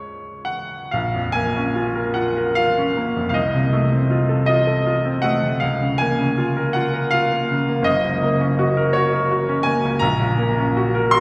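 In a 6/8 with free rubato, this romantic nocturne drifts at a slow 39 to 57 beats per minute, counted in dotted quarters. A solo baby grand piano carries the entire excerpt from 0.0 to 11.2 seconds, its bright, brilliant, natural tone placed up front and spanning Gb1 to C6. The mood is serene and dreamy, set in Bb minor with the instrument tuned to A4 = 442 Hz. The harmony opens on Db, settles into Bb minor at 1.0 seconds, and moves through F7/C and Bbm/Db before resting on Gb and Gb/Bb. A long church reverb of 3.2 seconds surrounds the piano in a resonant hall, and the passage is cut from a longer piece.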